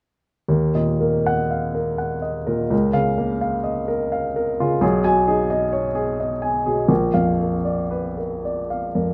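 Classical romantic character piece for solo piano in E-flat minor, a brooding, stormy excerpt in 3/4 that moves with flexible rubato at roughly 77-91 BPM. A warm baby grand carries everything from 0.5 to 9.1 seconds, spanning Bb1 to Ab5 with a present, polished tone placed up front by close, detailed microphones, while a moderate recital-hall reverb adds space around it. The harmony passes from E-flat minor through B-flat minor and A-flat minor before landing on B-flat major at 6.9 seconds, leaving the fragment poised on that chord.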